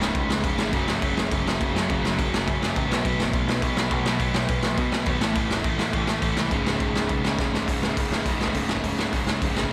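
A straight, driving 4/4 pulse from a raw garage drum kit, with punchy kick, medium-tuned snare, hi-hat and crash sitting up front with a gritty, saturated, rolled-off sound, powers this raw, urgent punk rock excerpt cut from a longer piece, as a bright, compressed distorted electric guitar and a dark, sludgy overdriven guitar with slapback echo grind out riffs over C#m, F#5, B5 and A5 in the background alongside a growling, overdriven picked bass, with a drum fill at 7.4 seconds leading into a new section at 7.7 seconds, all in a small room with light reverb.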